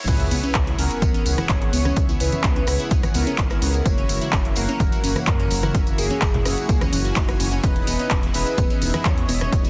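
A dense, heavily limited modern master with digital ambience frames this dreamy, driving progressive house excerpt, cut from a longer piece at 127 BPM in 4/4 in C# dorian, sitting in a drop from the first moments. An overdriven, punchy electronic kick and a layered deep house kit of crash, handclaps, hi-hat and rim click anchor a straight groove, with sidechain pumping on the hats and cymbals. A jingly tambourine and close, acoustic congas, entering at 1.0 seconds, sit in the background. A round, deep analog bass carries the low end beneath a crystalline wavetable pluck playing arpeggios and soft, detuned supersaw stabs, all three breathing with sidechain pumping. A velvety, wave-folded synth lead with vibrato, chorus and tape echo sings the melody over a very quiet, ethereal pad shimmering with granular texture and phaser, while a riser, swell and sub drop mark the impact in the opening 2.0 seconds. 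The harmony moves from C#m7 to F#7 at 3.9 seconds and to Emaj7 at 7.6 seconds.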